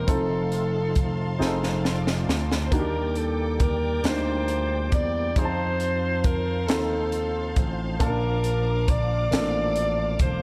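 Lightly reverberant and intimate, this reverent, uplifting slow gospel excerpt in 6/8 at 45 BPM sets a mellow, distant alto saxophone melody up front over a punchy amped slap bass and a crisp drum kit with a high-tuned snare, while a baby grand piano with audible action noise, a lush bowed string section and a lightly overdriven tonewheel organ through a slow rotary speaker hold the background, the drums and organ both filling from 1.4 to 2.7 seconds as the chords move from F7 through Ebmaj7 to Bbmaj7.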